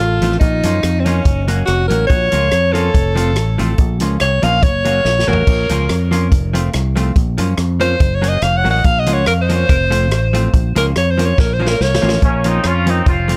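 A bright, present alto saxophone with light vibrato carries an energetic solo over this driving ska groove in Bb harmonic minor at 142 BPM, its line touched by analog delay as the chords cycle through Bbm, Gb and F. Underneath, a dark, round fingered electric bass and a punchy, up-front big-band drum kit push the lightly swung feel, with drum fills at 5.1 and 11.4 seconds, while a clean, compressed hollow-body jazz guitar adds picked accompaniment. At 12.2 seconds the saxophone stops and a mellow, soft-attack horn section with its own analog delay takes over the melody for the brief closing moments of this cut from a longer piece, all set in light reverb.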